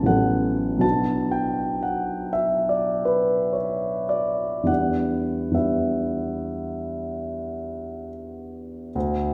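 A solo concert grand piano, natural and up front with a deep bass, plays alone from 0.0 to 9.3 seconds across a range from A1 to A5 in this short excerpt of classical, impressionist music in E dorian, tuned to A4 = 441 Hz. The mood is mysterious and wistful, moving in a rubato 5/4 at around 67-83 BPM as the harmony passes from A69 to Bm at 0.8 seconds and settles on Em7 at 4.7 seconds. A church or concert hall lends a wet recital-hall reverb with a 1.5-second decay, and the sound is rounded off with nothing above 10.7 kHz.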